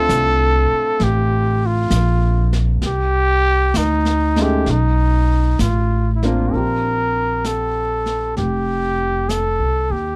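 Swinging gently at 65 BPM in 4/4, this tender, intimate jazz ballad in Bb major sets a mellow trumpet up front, with light vibrato and scooped notes, over a woody pizzicato upright bass, a warm concert grand piano in the background with audible action noise, and a dark vintage brush drum kit entering at 0.1 s, recorded dry and close as the chords move from Dm7 through Cmadd9 and B7 to Bb69 at 6.5 s.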